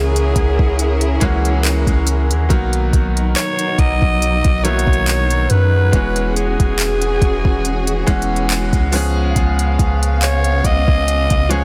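A gently swung sixteenth-note groove sets a slow, unhurried pulse in 4/4, with a smooth, produced R&B drum kit joining at 0.2 seconds, its soft kick, silky hi-hat and handclaps sitting up front. Beneath it, a round, sine-like 808-style bass with a fast attack and decaying notes supplies deep low end at the same forward level as the drums. This short, dreamy and romantic contemporary R&B excerpt is led by a breathy alto saxophone in a pop style, raspy and gritty yet smooth on top, carrying the melody with vibrato and a tape echo trailing behind it. A brilliant concert grand piano with natural tone and a full low register provides accompaniment, while a dark, woody string section holds lush bowed chords with vibrato. The harmony moves through F#9/C#, Bmaj7, E69 and C#7, and the studio ambience and dense, heavily limited modern master give the whole a close, polished sheen.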